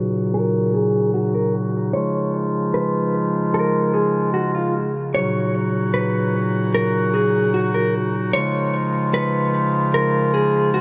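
A warm, vibrato-laden woodwind ensemble opens this spacious, ethereal half-time hip hop clip at 150 BPM in Eb minor, holding up-front, low-pass-filtered chords that move between Ebm7 and Dbadd9, before a dark, clean, fingered electric guitar enters at 0.3 s with a compressed, tape-echoed melody, all bathed in a huge ambient reverb as a filter sweep runs through the full 10.8 seconds.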